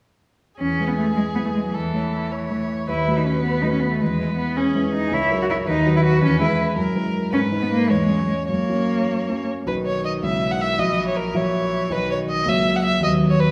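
Heard through a wet scoring-stage reverb, this spirited, graceful excerpt from a quick classical-period piano trio movement in E major moves at 107 BPM in a rubato 6/8, with a smooth, bowed violin with vibrato up front carrying the melody, a warm cello singing a second line beneath it, and a dark, mellow, vintage-toned grand piano with long sustain, also up front, supplying the accompaniment before the music turns to a new section at 9.7 seconds.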